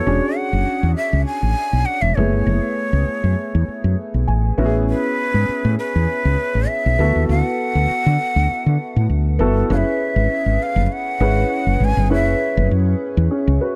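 A dry, close studio sound with little reverb gives this short cut from a longer piece of polished 1980s jazz-funk pop an intimate, up-front feel, slick and nocturnal at 100 BPM in 4/4 with a light swing on the sixteenths. A breathy, bright shakuhachi carries the melody with a soft attack and vibrato, its bamboo tone lifted in the highs and trailed by tape echo until it stops at 12.7 seconds. Beneath it, a concert grand piano with deep bass and long sustain plays the accompaniment through an analog chorus, adding a fill at 4.0 seconds. A woody fretless electric bass, round, punchy and hollow-bodied, sits prominently in the mix from 0.1 seconds. The harmony moves through lush extended chords, E13, F#m11, Amaj9 and D69, before settling on C#m7/F# as a new section begins at 9.7 seconds.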